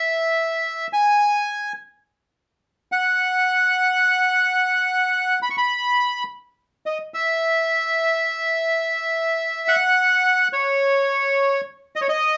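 In free time, this playful, nostalgic tango excerpt in E major features a solo bandoneon carrying the melody throughout its 12.4 seconds, sitting in a register from C#5 to C#6. The reedy bandoneon is up front, its tone coloured by a boxy small room with wet reverb, giving the feel of a band playing live together in one space.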